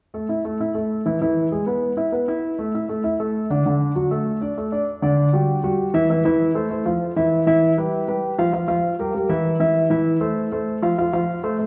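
A dark, mellow grand piano opens alone at 0.1 seconds, playing a lively, danceable jazz passage in G major at 197 BPM in a straight 4/4, ranging from D3 to F5 with audible action noise and long sustain. Sitting up front and intimate, it moves through chords such as A5, E, D, Am/E, Gm7, Edim and Fmaj7, with a new section arriving at 4.9 seconds, all carried by a wet recital hall reverb in a church or concert hall setting. Cut from a longer piece, this short fragment ends at 11.7 seconds.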